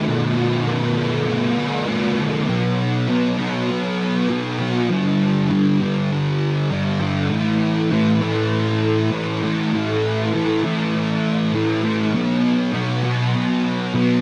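Rock with a dreamy, wistful mood, carried by a single thick fuzz guitar that plays alone from 0.0 to 14.2 seconds, picked and double-tracked, sitting up front with distortion, ensemble chorus and slapback echo. The guitar moves from a B7 opening through B5, G5 and A5 before returning to B5 at 12.1 seconds, in a straight 4/4 feel. Light reverb surrounds a dark, warm production, and this short passage is cut from a longer piece.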